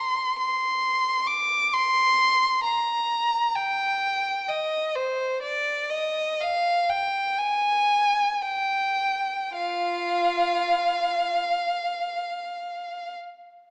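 Heard through a small speaker, this short passage from a longer classical piece sits in a moderate recital-hall reverb, giving a lonely, mournful mood in F dorian. A single bowed violin plays unaccompanied and up front from 0.0 to 13.1 seconds, its rich, focused tone carrying vibrato and a smooth top as it ranges from F4 to D6. The expressive, free-flowing playing moves with rubato at 39 to 69 BPM in 4/4.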